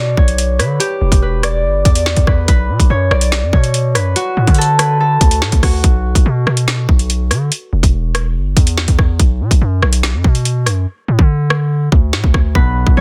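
Cold, ominous half-time drill in which a ringing, fingerpicked concert harp melody sits over a saturated, heavy 808-style bass and an up-front electronic kit of hard-clipped kick, woody snare, rim clicks and metallic hi-hats, with the harp dropping out at 8.1 seconds, the hats muting from 10.9 seconds, and a dark, mellow grand piano entering low at 12.5 seconds in this dry, densely limited cut from a longer piece.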